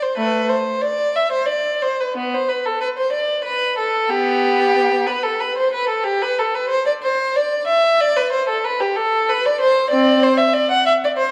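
Set in 12/8 and played with free rubato, this brief excerpt from a longer piece has a flowing, radiant character suited to a baroque-style suite movement. A single unaccompanied violin carries everything from 0.0 to 11.3 seconds, moving between A3 and F#5. The bowed tone is rich and smooth, colored with vibrato and kept even throughout. The violin sits up front yet carries a distant quality, framed by a moderate concert hall reverb with a 2.2 second decay. The production leans dark, and the instrument is tuned to A4 = 443 Hz.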